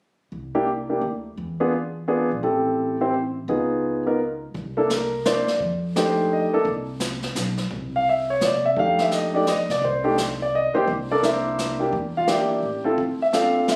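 A swinging jazz waltz at 171 BPM in 3/4 moves with a relaxed, sophisticated lilt, its eighth notes swung and its harmony centred on C mixolydian. Upright bass opens the fragment at 0.3 seconds, its pizzicato steel strings woody and growly, and the concert grand piano joins at 0.5 seconds to carry the melody, sounding up front with deep, natural lows. The opening passage moves through C7, E7b9, Am7 and Db9 before the brush kit enters at 4.5 seconds, adding brushed snare, hi-hat and a punchy kick with a medium-tuned snare in a natural studio-room sound. From there the changes shift to C9, F13 and a rootless D7, then cycle back through F13 and C9 toward Em7b5, Am7 and Dm7 as this cut from a longer piece ends. Light reverb gives the trio a gentle sense of space, though the recording carries the slightly roomy character of a phone capture.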